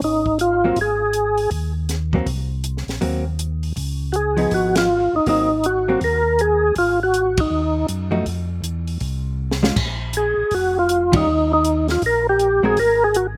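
Soulful and swinging, this soul jazz organ trio clip moves at 160 BPM in Ab mixolydian with a swung eighth-note feel. A lightly overdriven, percussive tonewheel organ carries the melody up front in three phrases, colored by chorus vibrato, slapback echo and a slow rotary speaker. A mellow, round second organ with key click and its own slow rotary supplies the bass, and a compact cocktail kit with dark cymbals, a high-tuned snare and punchy kick keeps time dry and acoustic. A clean, compressed hollow-body electric guitar, picked and up front, supplies the accompaniment. The band hits accents at 4.7, 7.3 and 11.1 seconds, and light reverb lends the outdoor recording a touch of space.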